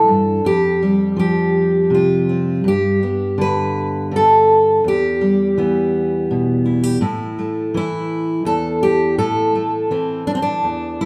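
A fingerpicked steel-string acoustic guitar opens this short folk fragment alone, sitting up front in the mix with a bright, fresh-stringed tone and an auditorium-sized body. The mood is haunting yet intimate, carried in an unhurried three-beat metre with a straight feel. The guitar covers a range from E2 to B4 as it moves through Fsus2, Gadd9 and Em before settling on A5 at 7.0 seconds and landing on Am at 9.2 seconds. A moderate reverb from a large studio room surrounds the playing, giving the performance a live, in-the-room presence. The piece is cut from a longer work, and this passage runs about 11.1 seconds.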